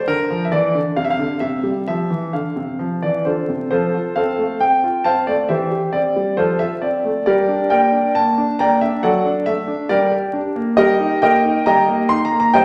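Graceful and elegant, this classical-period piano sonatina moves at a brisk 136 BPM in a straight 4/4, set in F major and cut from a longer piece. A clear, intimate baby grand plays solo and sits up front, spanning C3 to C6 with audible action noise. After an opening passage, a second section begins at 3.7 seconds and turns toward G minor harmonies, all heard in a wet recital hall reverb with vinyl crackle.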